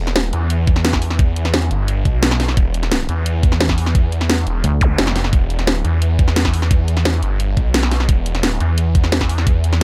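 A snarling, distorted saw bass opens this short cut from a longer dark, technical drum and bass track, its growling, detuned sawtooth tone sitting up front with overdrive and a moving notch. Almost at once the drum kit arrives with hi-hat and a cracking snare, and an electronic kick with a knocking, layered punch joins at 0.7 seconds, giving a straight, driving pulse. The mood is futuristic and aggressive, anchored on a single E minor chord throughout. Around 4.6 seconds a heavy, pulsing pluck wobble bass flashes through on a saturated, chorused note, while a very quiet electronic zap flickers just after. The production is dark and warm, set in a digital ambience.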